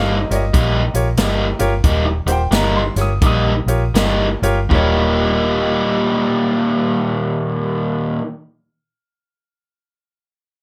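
An overdriven, up-front picked electric guitar riff opens this soulful, rollicking electric blues shuffle fragment over a dark, round, foam-muted electric bass and a natural, deep-voiced grand piano on an Eb9 chord, with an airy, polished big-band drum kit of hi-hat, punchy kick and medium-tuned snare swinging in from 0.3 to 4.9 seconds as the groove slows down through the first section, all set in a moderate club ambience.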